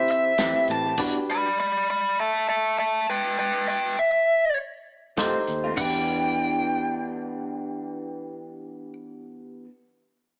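A biting, overdriven lead guitar sits up front and carries the melody in this smoky, soulful straight-eighth soul blues clip, its bright picked tone cutting through a moderate stone-room reverb. Beneath it, a worn, slightly out-of-tune tine electric piano plays clean accompaniment through its built-in speakers. A fingered electric guitar through a small old amp adds dark, lo-fi, slightly broken-up stabs. A foam-muted vintage bass gives round, punchy low notes, while an acoustic soul drum kit with dark cymbals, a medium-tuned snare and a tight kick keeps a mid-forward, rolled-off sound. The band stops at 1.0 s, and once the electric piano trails off at 1.5 s the lead guitar plays alone until the group returns at 5.2 s; the lead guitar's line ends at 8.9 s. It all sounds like a band playing live in one room, heard through a small speaker.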